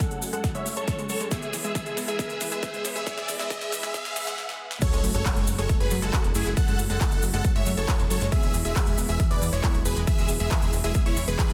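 A huge, euphoric supersaw lead carries the melody through this driving, bittersweet uplifting trance excerpt in F# minor at 137 BPM, pumping under sidechain with delay over a punchy overdriven kick, crisp-hatted big-room drum kit, background analog pluck arpeggios with chorus and tape echo, a very quiet supersaw stab line, a silky string pad, grainy cabasa, and a riser and sub drop from 1.0 s, while a funky plucky analog bass enters at 4.9 s as the build-up breaks into the drop at 4.8 s, all in a dense, heavily limited modern master.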